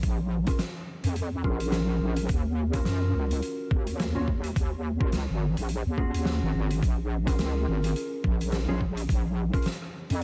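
A swung 16th-note feel at 106 BPM in 4/4 drives this short, funky and gritty glitch hop cut in Bb minor, moving from Bbm7 to Ebm9 and back to Bbm7. Up front, a pitched-down, sampler-style electronic kick lands thumpy and compressed, while an oversized, low-tuned acoustic kit sits further back with hi-hat, rim click and a fat, saturated snare in a bright stone room. The wobble bass is heavy and detuned, blending square and sine tones in unison with a fast attack, chorus and overdrive, and it sits prominently alongside the kick. From 0.5 seconds a mellow, clean, fingered electric guitar plays dark stabs that pump with sidechain, pass through a low-pass filter and tape echo, and carry a filter sweep. The mix is dry and coated in vinyl crackle and lossy compression artefacts, and the kick and guitar drop out at 9.6 seconds just before the cut ends.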